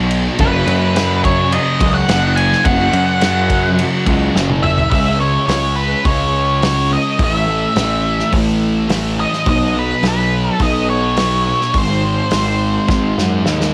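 A straight 4/4 pulse at 106 BPM carries this hazy, dreamy excerpt of shoegaze-tinged dream pop rock in C# minor, cut from a longer piece. A loose indie drum kit in a small room drives it with a punchy kick, a medium-tuned snare, hi-hat, ride, toms and dark cymbals, dropping fills at 4.3 and 12.9 seconds. Beneath it, a fuzz picked electric bass sits up front with a round, overdriven growl, while a thick, double-tracked fuzz guitar plays the riff, smeared by lush chorus and cassette tape saturation. An octave-fuzz lead guitar enters at 0.4 seconds with a dark, distorted melody, trailed by analog delay. Recorded at home on cassette with little reverb, the sound is close and grainy as the harmony moves from F#5 through C#5, A5 and B5 to G#7.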